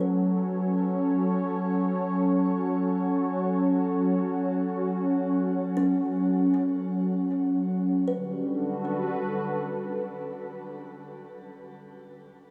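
The recording is soaked in a huge, dreamy reverb with an 8.4-second tail, and a small room sound sits beneath that wash. This is a weightless, peaceful ambient piece in free time and G lydian, tuned to A4 = 439 Hz, cut from a longer work. Up front, an analog pad holds sustained chords from D3 to C#5 for the full 11.1 seconds; its detuned sawtooth tone is smooth, soft in attack and thickened by chorus and shimmer reverb. In the background, a kalimba plays arpeggios between F#3 and B4, its short thumbnail plucks sounding woody, hollow-boxed and dark, carried on tape echo and its own shimmer reverb. The harmony rests on F#m until 8.1 seconds, when it opens onto Gmaj7 for the closing stretch.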